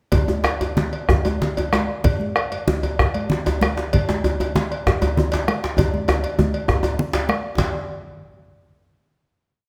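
A festive, driving West African drum ensemble in a lilting 12/8 opens with a deep, dark bombo, high-tuned congas played with soft hands, a metallic cowbell bell pattern, a very quiet cracking djembe and an up-front lead djembe with metal rattles, all set in a moderate recital-hall reverb and speeding up through a drum fill from 5.8 s before a final hit at 7.6 s closes the short piece.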